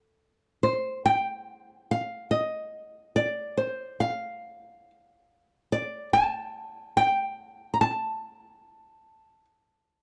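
Intimate and tender, this short folk excerpt cut from a longer piece sets a solo nylon-string guitar, fingerpicked with the woody, small sound of old strings and a touch of slapback echo, up front in a dry, close 1970s-style studio at a slow 47 BPM in 6/8, playing from 0.6 to 9.4 seconds.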